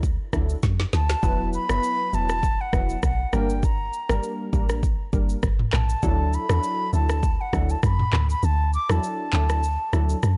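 A breezy, sunny afrobeats excerpt at 100 BPM in D major opens with a deep, round log drum bass, its percussive FM tone carrying a noise layer, alongside an up-front, produced afro-pop kit with a deep kick, woody snare, handclaps, rim clicks, shaker and toms. Sawtooth analog keys enter at 0.3 seconds, detuned and thickened with chorus and a filter sweep, and a drum fill then leads into the main groove at 1.2 seconds. A mellow concert flute carries the melody from 0.9 seconds, its airy straight tone and crisp attack trailed by analog delay as it plays expressively high above the band. The harmony moves from Dadd9 through Esus2 and Gm before returning to Dadd9 at 6.0 seconds, all over a lightly swung sixteenth-note feel. The kick drops out from 8.4 seconds to the end, and the whole mix has a dry, gritty hardware character with transformer saturation and a rolled-off top.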